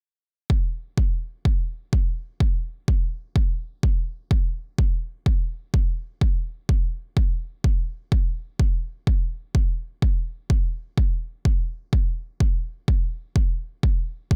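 A deep electronic kick drum opens the recording at 0.5 seconds, and it is the only part heard in this short section of a longer house piece. The kick is layered and overdriven, giving it a thick, gritty weight, and it sits up front in the mix. The straight 4/4 pulse carries a driving energy, while the overall mood leans dreamy. The sound is dry, with little reverb around the drum. The kick continues as the single focus until the recording ends at 14.4 seconds.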